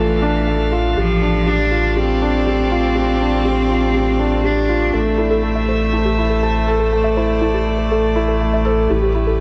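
A clear, distant bowed cello melody with tape echo opens over a felt-muted upright piano riff, a nasal, reedy string quartet holding sustained chords and a deep, round analog bass in this cinematic, hypnotic piano and strings electronica at 121 BPM in A minor, with the cello giving way at 4.9 s to a soft, dark chorused pluck playing arpeggios in the background, all bathed in a huge ambient reverb.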